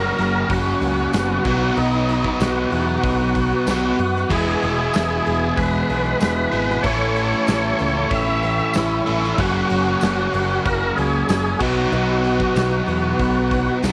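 An up-front, overdriven tonewheel organ opens this swaggering classic rock excerpt at 94 BPM in a straight 4/4, carrying the melody with a gritty, thick tone, key click, slow rotary speaker, chorus vibrato and a slapback echo. Alongside it from the start, a fuzzed, dark octave-fuzz lead guitar plays a second line in the background. A stack of picked electric guitars lays down the riff: a crunchy, very quiet overdriven part, a brighter overdriven one, and a sludgy, double-tracked distorted guitar sitting low. A quiet picked steel-string acoustic guitar adds accompaniment beneath them, while a growling, round electric bass with overdrive anchors the low end. The big rock drum kit arrives at 0.2 seconds with a punchy kick, medium-tuned snare, hi-hat and crash in a big room with a smooth, rolled-off top, and a jingly, close tambourine joins at 1.1 seconds. The chords move confidently from F# through B, E and A before returning to F# and B, all in a dry, punchy mix with little reverb.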